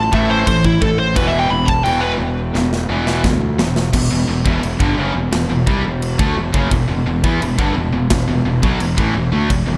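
This heavy metal passage, cut from a longer piece, opens with a dark, high-gain lead guitar melody sitting up front, colored by distortion and a digital delay, before it drops out at 2.1 s. Beneath it, two distorted electric guitars drive the riff in E minor at 86 BPM in a straight 4/4: one is compressed and bright, while a tighter, picked companion sits further back in the mix. A fuzz-soaked fingered bass adds a growly, punchy overdriven low end, and a polished, acoustic metal drum kit carries bright cymbals, a medium-tuned snare and a tight kick in an airy big room. The harmony moves from A5 to E5 before a drum fill from 2.5 to 3.9 s leads into a new section on E minor. The mood is epic and aggressive, with a light reverb around the whole band.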